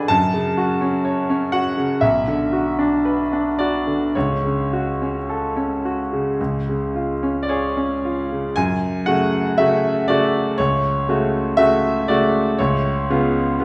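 Classical romantic character piece for solo piano, lyrical and hopeful, in F# minor at a slow, rubato 52-64 BPM in 4/4 with tuning at A4 = 438 Hz, where a brilliant, naturally toned grand piano with long sustain sits up front across a range from B1 to Cb6, moving from F#m through Bm and F#m/C# to C# before a second passage from 8.6 seconds ends on C#7, all set in a recital hall reverb heard from further back in the room, cut from a longer piece.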